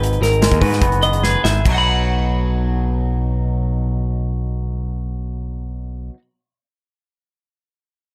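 In a straight 4/4 that slows down over the opening, this bright, playful math rock and midwest emo fragment sets a twangy, fingered electric guitar beneath a bright, compressed clean electric guitar picking high arpeggios through spring reverb and slapback echo, while a growling overdriven picked bass sits up front and an acoustic drum kit with a tight kick, crash, hi-hat and snare plays a fill from 1.2 seconds before dropping out at 1.8 seconds, as the harmony moves from G#m9 to B in a dry room.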